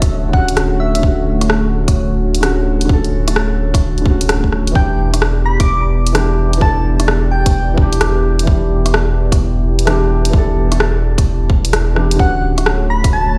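Wistful and nocturnal, this future garage excerpt at 129 BPM in E dorian swings its 16ths over a tight, up-front electronic kick and a garage kit of hi-hat and rim click, while a deep sine sub bass, a mellow felt-muted upright piano and a moody detuned sawtooth pad with 12-bit sampler grit all pump under sidechain, and a round, keys-like FM synth lead with chorus and digital delay surfaces in short phrases at 0.0, 4.8 and 12.2 seconds across a Dmaj7 to Em7 and back to Dmaj7 progression, the whole mix sounding as if played on a big sound system in a bare room with a large studio reverb.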